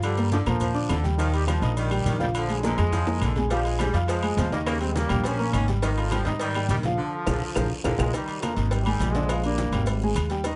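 A woody, pizzicato upright bass sits up front in this festive, danceable salsa, cut from a longer piece, beneath a bright trombone section with vibrato carrying the melody and a clear, smooth-topped saxophone section playing a second line in the background until 8.0 s. A vintage upright piano with long sustain and audible action noise fills out the accompaniment, while ringing agogo bells and timbales, compressed, saturated congas, raspy guiro, grainy maracas and very quiet claves drive the percussion, joined at 3.5 s by a tight, high-tuned cowbell. A drum fill and a band accent lead into a new section at 8.1 s, all set in light reverb.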